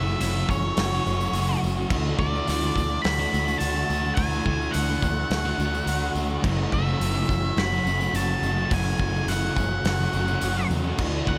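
A wistful, dreamy shoegaze and dream pop excerpt at 106 BPM opens on a dark octave-fuzz lead guitar melody with delay, a bright, twangy guitar through a small old amp picking chorused arpeggios in the background, an overdriven riff guitar with reverse reverb, a thick fuzz guitar riff with lush chorus, and a round, punchy foam-muted bass over F#m7 and Dadd9, joined at once by a faint, jingly tambourine and a loose indie drum kit with dark cymbals and a tight kick in a small room, while a double-tracked crunchy overdriven guitar riff enters at 6.4 s.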